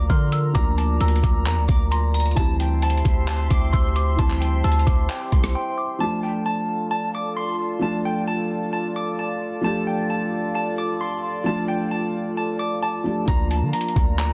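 A boomy, deep 808-style bass and a gritty, pitched-down sampler-style drum kit, with thumpy kick, handclaps, hi-hat and rim click, hit hard up front in this eerie half-time trap excerpt at 132 BPM in D minor. The drums drop out at 5.5 seconds and the bass at 5.6 seconds, and both return at 13.3 seconds. Throughout, a clean, fingered electric guitar carries the melody through spring reverb and digital delay over a muted felt piano with audible action noise and a moody analog pad shimmering with chorus and phaser, while a crystalline FM synth bell adds a second line until 6.0 seconds, all in a dense, heavily limited, dry mix.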